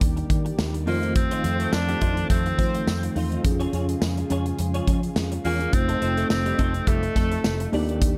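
A bright tenor saxophone carries the melody from 0.9 seconds, its vintage pop tone shaded with vibrato and trailed by digital delay. The track is a romantic, glossy slice of 1980s-style pop at 105 BPM in 4/4, with a light sixteenth-note swing and a dark, warm production, cut from a longer piece. Beneath the sax, a tine electric piano with medium tremolo plays through a combo amp, while a clean, compressed, picked electric guitar plays a riff coloured by ensemble chorus and delay. A foam-muted, round, amped fingered bass and an up-front studio drum kit, with punchy kick, medium-tuned snare, hi-hat and tambourine, form the rhythm section. In the background, a thick, detuned unison pad sustains lush chords through chorus, and a funky sawtooth polysynth adds filter-swept stabs from 1.4 to 7.4 seconds. The harmony moves from Ebmaj7 to F7 and Db/F before returning to F7, set in light small-room reverb.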